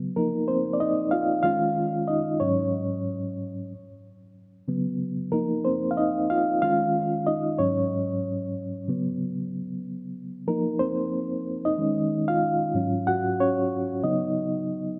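R&B at 93 BPM in 4/4, this sultry, soulful fragment from a longer piece settles into a relaxed swing on the sixteenths in F phrygian. A lone reed electric piano carries the whole 15 seconds, its reedy, mellow tone sitting up front with a clean character and a fast tremolo shimmering through its built-in speakers. The instrument ranges from Ab2 up to Gb5, moving through a cycle of suspended chords: F7sus4, Eb9sus4, Ab7sus4 and Db7sus4, played twice in full, with the third pass closing on Db9sus4 at 14.0 seconds. A wet concert hall reverb with a long 2.4-second tail surrounds the keys, giving the dark production a spacious, velvety glow.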